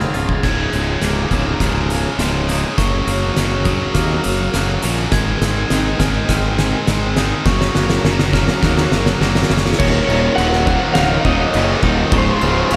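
Opening at 103 BPM in Db major, this soaring, hopeful post-rock excerpt puts a punchy, gritty low-tuned drum kit and a round, fuzzy fingered bass up front beneath very quiet, distant bowed strings, a dark, ringing glockenspiel with tape echo, faint twangy guitar arpeggios and an overdriven guitar riff that drops out at 0.4 s as a tight, bright distorted riff takes over through a drum-filled build-up over Gb and Ab chords, before the overdriven guitar returns at 9.8 s alongside a slightly broken-up slide guitar melody with lush chorus and tape echo over Ebm7 and Dbmaj7, in a dreamy, reverb-soaked mix.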